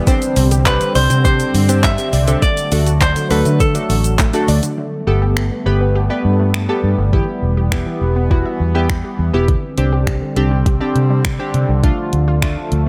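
A straight 4/4 groove at 102 BPM drives this summery, euphoric dance-pop excerpt in G major, built on a smooth R&B drum kit with a soft kick, warm hi-hats, finger snaps, handclaps and shaker sitting up front, while a grainy, very quiet tube shaker adds texture until 4.8 seconds. A dark, round, foam-muted fingered electric bass enters at 0.4 seconds and sits up front with the kit, pumping against the sidechain. Above it, a sweeping resonant pad of detuned sawtooths holds sustained chords with a slow filter swell and chorus, and chorused retro synth keys add glossy, decaying pulse-wave accompaniment. Deeper in the mix, a lush, warbling unison pluck spins arpeggios through a digital delay. A clean, picked electric guitar carries a short melody from 0.7 to 4.4 seconds, echoed by its own digital delay. The harmony moves from Csus2 and D into Gadd9, Em and Csus2 before closing on Dm, all set in light reverb and digital ambience.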